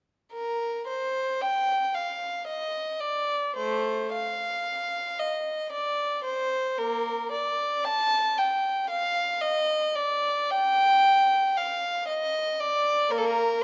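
Heard through worn, warbling cassette tape with drifting pitch and a moderate recital-hall reverb, this fragment of a baroque-style suite movement for unaccompanied violin is serene and dance-like, in 3/4 at 56 BPM with a rubato feel in Bb major, tuned to A4 = 438 Hz. A single violin plays alone from 0.3 to 13.6 s, close and up front, ranging from A3 to A5. Its gut-string, period-style tone pairs an airy bow with a reedy, nasal edge.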